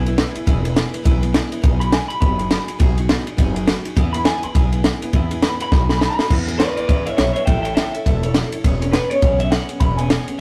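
Upbeat and retro, this swung rockabilly fragment sets a twangy, slightly broken-up electric guitar melody from a small old amp over a full-bodied picked acoustic guitar, a woody, thumpy gut-string upright bass and an up-front cocktail drum kit with a punchy kick, high-tuned snare and dark cymbals that plays a fill at 5.7 seconds, captured as a rough, tube-saturated rehearsal-room recording with moderate small-room reverb.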